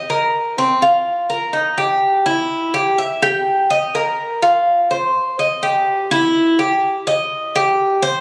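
Captured on a phone in a club room, the recording is compressed and carries a moderate plate reverb with a 3.2-second tail. This sultry, nostalgic latin fragment, cut from a longer piece, moves at 125 BPM in a straight 4/4, tuned to A4 = 439 Hz. A Cuban tres plays solo and up front throughout, its acoustic, picked double strings sounding metallic, with some strings doubled at the octave. Its line stays between C4 and E5 and moves into a new section at 4.4 seconds before the fragment ends at 8.2 seconds.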